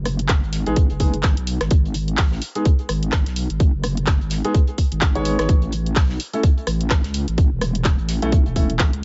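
A nasal, resonant vowel-sweep wobble bass drives this bouncy, gritty bass house excerpt at 127 BPM in G# phrygian, its dark, saturated tone thickened by chorus and overdrive and pumping against a tight, up-front electronic kick. A layered garage kit adds handclaps, hi-hat and rim click with a tape-warm sheen, while a very quiet, dry 70s kit with a fat snare sits underneath, all riding a 16th-note swing. A boxy concert grand piano plays stabs with long sustain and digital delay from 0.7 s over the G#m-to-A movement, in a close, dark mix with little reverb.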